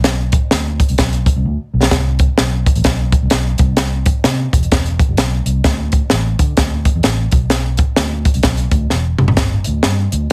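Through a heavily compressed, radio-like sound with light reverb, this danceable, uptempo 1960s-style soul excerpt with a swung feel pairs a dark, round, foam-muted fingered electric bass with an up-front, dry cocktail drum kit whose high-tuned snare and punchy kick drive the groove, with drum fills at 1.4 and 8.9 seconds.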